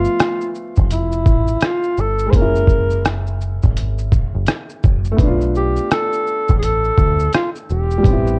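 A breathy tenor saxophone carries the melody up front with light vibrato, subtone and scooped notes, muffled by a low-pass filter and floating over a felt-muted upright piano whose soft, intimate chords carry audible action noise and short sustain. A deep, round picked electric bass and a gritty, pitched-down sampler-style drum kit with a thumpy kick, rim click, hi-hat and shaker give this hazy, nostalgic lo-fi hip hop cut a swung groove, moving through G13, F#7 and Bm7b5. Light reverb and a worn, warbling cassette-tape quality with drifting pitch colour the whole 8.4-second fragment.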